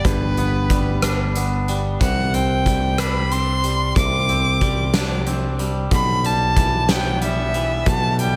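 A lightly reverberant, cinematic post-rock fragment moves in a slow 6/8 at 61 BPM, carrying a melancholic mood over a G, Csus2 and Em/B progression. A rich, bowed violin with smooth vibrato sings the melody up front, while a clean, twangy electric guitar plays fingered arpeggios, and both parts trail analog delay. A huge acoustic arena drum kit, with a fat snare, punchy kick, hi-hat and rim clicks, sits in a natural big room, and a bright, growly picked bass joins at 0.1 s.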